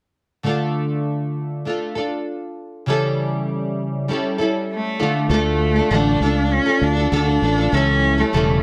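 A small, fingerpicked nylon-string guitar, double-tracked and up front, opens this tender, reflective pop fragment at 0.4 s, moving between Dm and A7 chords in a straight 4/4. A single bowed cello enters with a smooth, rich melody and vibrato at 4.7 s. A growly, punchy fingered electric bass joins at 5.3 s to carry the low end, all in a moderate studio reverb before the music is cut off.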